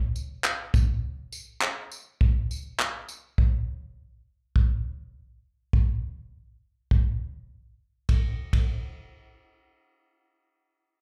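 This short cut from a longer pop piece sounds like a live gig heard through the venue's PA, in a fairly dry room touched by a little club reverb. A loose indie drum kit carries the passage, coming in at 0.2 seconds with an acoustic, small-room character. The tight kick sits up front, joined by handclaps, ride cymbal and tambourine in a straight 4/4 feel. The mood is carefree and easy-going, with the music moving through new sections at 3.4 seconds and again later on. The drums stop at 8.7 seconds, shortly before the passage ends.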